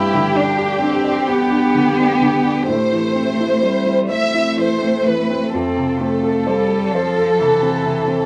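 A large studio room lends a moderate reverb to this fragile neoclassical fragment for piano and strings, cut from a longer piece in A minor, played rubato at 43 BPM in 6/8 with tuning at A4 = 444 Hz. An up-front, lush violin section carries the melody with expressive vibrato over a distant solo cello's second line with portamento, while a woody, slightly detuned upright piano with short sustain supplies the accompaniment. Behind them, a very quiet, warbling tape-like pad holds dark, nostalgic chords moving from G to Am to F, adding a reflective, lo-fi haze.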